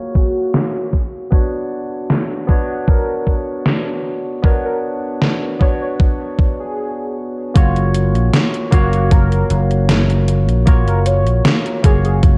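A straight 4/4 pulse from an overdriven, thumpy electronic kick and a sampler-style 80s drum machine with hi-hat and a gated-reverb snare drives this faded, dreamy vaporwave fragment, both drums up front and re-recorded in a large room. A barky, clean tine electric piano carries the chords through lush chorus and analog delay, while a velvety, detuned synth lead with vibrato, portamento and tape echo drifts in the background. After a filter sweep and a short break ending at 7.6 seconds, a bright, growly slap bass joins with a punchy, amped tone, all within a soft haze of light reverb and digital ambience.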